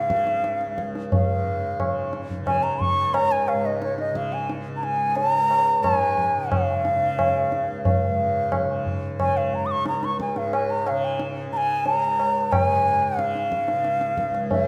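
A close-miked, airy bamboo bansuri sings a devotional, radiant Hindustani classical melody up front over a bright, buzzing, shimmering tanpura drone sitting lower in the mix, its soft attack and expressive vibrato carried through a wet concert-hall reverb, while a low-tuned, ringing tabla with a small-room sound joins at 0.1 s to mark a five-beat cycle in this excerpt from a longer piece.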